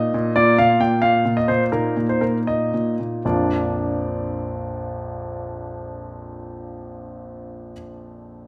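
A clear, intimate concert grand piano plays solo and up front, its deep bass, long sustain and audible action noise giving this short, cheerful, graceful classical-period sonatina fragment in Bb major a polished, present character. The 6/8 pulse moves at 76-91 BPM in dotted quarters with a rubato feel, easing into a slowdown across the opening phrase before a second phrase begins at 3.3 s and runs to 6.3 s. A moderate recital hall reverb surrounds the instrument.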